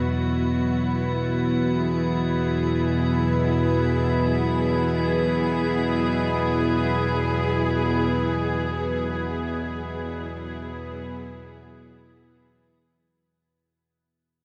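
From the first moment, an up-front analog drone of sawtooth and pulse waves with pulse-width modulation and chorus hums low beneath a close, intimate studio cello section bowing a sustained Esus2 chord sul tasto with light vibrato and shimmer reverb, while a faint, eerie, warbling FM drone with a metallic, inharmonic edge hovers high above in a huge, cavernous reverb that gives this desolate dark ambient excerpt its sense of endless space until it fades out from 8.1 to 13.2 seconds.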